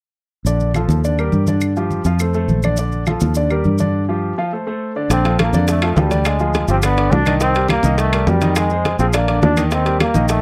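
A straight 4/4 salsa groove at 208 BPM in Bb major drives this joyful, danceable excerpt, where a dark, round, foam-muted fingered electric bass and a clear, intimate concert grand piano with audible action noise sit up front over grainy maracas plus low-tuned congas and woody claves in the background, a break arrives at 3.9 seconds, and at 5.1 seconds a bright, roomy trombone takes the melody while tight, high-tuned bongos and ringing metal-shell timbales join, all in a dry, close 1970s-style studio sound with light reverb.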